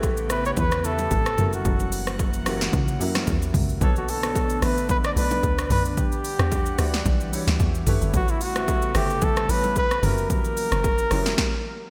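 Soulful and hypnotic, this amapiano excerpt moves at 111 BPM with a 16th-note swing, as a mellow, veiled trumpet in a bucket mute carries a jazz-style solo with light vibrato and delay up front over a punchy, layered deep house kit, very quiet hard-hand bongos and congas, short-sustain grand piano chords with analog chorus, and an airy, breathy pad that pumps softly in the background. A funky, plucky analog bass opens the groove until 3.8 s, when a tight, percussive log drum bass takes over as the harmony moves from A9 and F#7b9 into Bm9 and Em9. The bright 1980s-style digital production sits in a lush hall reverb, and the band drops into a stop at 11.4 s.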